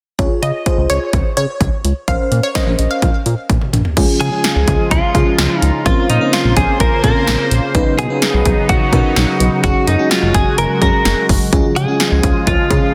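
Set in a dense, heavily limited mix with moderate plate reverb, this bright, nostalgic synth-pop excerpt at 127 BPM in Db major pairs a punchy analog drum machine up front and a glossy, dark chorused synth bass with a dreamy FM electric piano carrying a soft pad layer, chorus and tremolo, while a round analog pluck with chorus and delay sounds briefly near the start before a drum fill at 3.5 seconds ushers in an evolving, resonant sweeping pad at 4.0 seconds and a clean, direct-recorded electric guitar melody with analog chorus and delay at 4.2 seconds.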